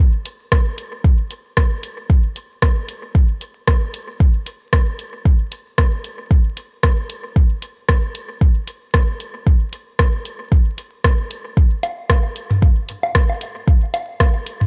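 A 4/4 pulse at 114 BPM with a 56% swing on the 16ths drives this hypnotic, nocturnal techno piece, cut from a longer work and anchored by a deep, layered electronic kick drum set up front. A deep house drum kit of hi-hat and rim click rides alongside it with dub echo, and at 11.8 s analog electronic woodblock and toms enter, overdriven and pumping from sidechain, with their own dub echo. The sound is dry and gritty, like a hardware recording re-recorded in a small room, with vinyl crackle throughout.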